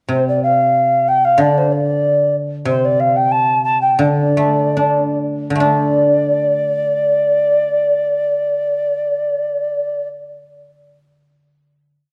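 Chinese traditional chamber music, wistful and graceful in this short complete piece, in which a pure, clay-toned alto ocarina sings a tongued modal melody with ornaments and vibrato over a ringing, silvery low-string guzheng accompaniment played with fingerpicks, all bathed in a wet recital-hall reverb as the music slows from 2.7 seconds into a final chord at 5.6 seconds, and the guzheng rings on alone after the ocarina stops at 10.1 seconds.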